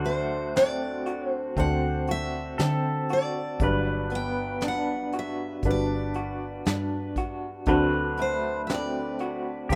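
This short cut from a longer acoustic folk-pop ballad in G major opens with brushed drums, round foam-muted bass, a felt-muted upright piano, a tremolo-tinged electric guitar and a pedal steel all sounding together. A moment later, at 0.1 seconds, a full-bodied picked steel-string acoustic guitar enters up front with the melody, ranging from C5 to G5. At a slow 59 BPM in a straight 4/4, the mood is heartfelt and intimate, with the harmony moving from D7 to Gmaj7 at 3.6 seconds and back to D7. The piano's soft, mellow tone and the small-room kit with its punchy kick and medium-tuned snare keep the accompaniment gentle, while the dark, amped bass anchors the low end. The electric guitar's arpeggios come through a slightly broken-up, lo-fi small old amp with tremolo. Above them, the clean, compressed pedal steel adds a warm, sliding second line, all set in a light reverb.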